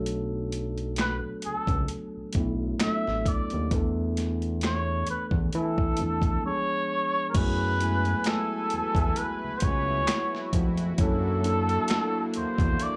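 R&B and neo-soul in F# minor at a slow, sultry 66 BPM with a gentle 16th-note swing, this live club cut pairs a mellow tine electric piano and a fat, saturated analog bass with gritty, compressed boom bap drums, while a veiled cup-muted trumpet carries the soulful melody from 1.0 seconds with vibrato and scooped notes, and a smooth, chorused analog pad with tremolo joins at 7.3 seconds as the harmony moves to F#m11.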